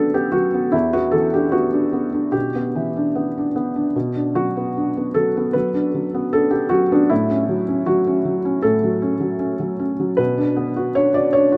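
Loosely rubato around 76 BPM in 4/4, this melancholic, wistful neoclassical minimalist fragment in B minor, cut from a longer piece, features a solo felt-muted upright piano, soft, mellow and intimate with short sustain and placed up front, moving through Bm, Em7 and F#m/A before settling back on Bm at 10.2 seconds, all set in a huge ambient reverb that lingers for 4.8 seconds.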